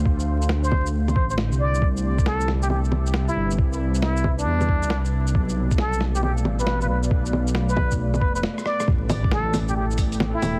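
Nocturnal and wistful, this future garage excerpt moves at 136 BPM in A minor with a swung 16th-note feel, as a warbling, chorused tape-like pad holds Dm7, Cmaj7 and Bm7b5 chords over a deep, rumbling detuned saw bass, both pumping to the sidechain. A muffled, thumpy sampler-style kick and a lo-fi kit of bongos, hi-hat, rim click, shaker and snare, re-recorded in a large room, carry the groove, while a plunger-muted jazz trumpet plays the solo melody with wah-wah, vibrato and scooped notes through 12-bit grit and tape echo. After a break and drum fill from 8.4 s, a faint electronic impact arrives at 8.9 s as the harmony settles on Am7, all set in a squashed, radio-like ambience with vinyl crackle.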